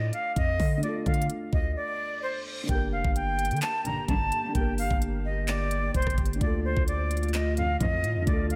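A half-time trap groove at 129 BPM in G minor drives this melancholic, hard-hitting hip hop piece, with a knocking kick, crisp hats, handclaps and rim clicks up front over a deep, sine-toned 808 bass. An airy, expressive jazz flute with vibrato and delay carries the melody above a dark, boxy concert grand piano, and a reverse cymbal sweeps through the latter part of a brief break that begins at 1.8 seconds. From 3.4 seconds a glassy FM pad with chorus hovers in the background while short bowed stabs from a lush symphonic string section punctuate the dreamy, reverb-soaked mix.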